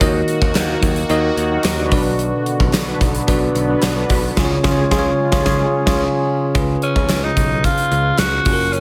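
A bell-like tine electric piano, growly picked bass, a sweeping resonant pad and a gated 80s drum kit with a fat snare and tambourine open this romantic, glossy 1980s-style pop excerpt, joined by very quiet crisp handclaps and round synth brass stabs before a breathy, raspy tenor saxophone takes the melody at 6.8 seconds over a closing C#7 chord.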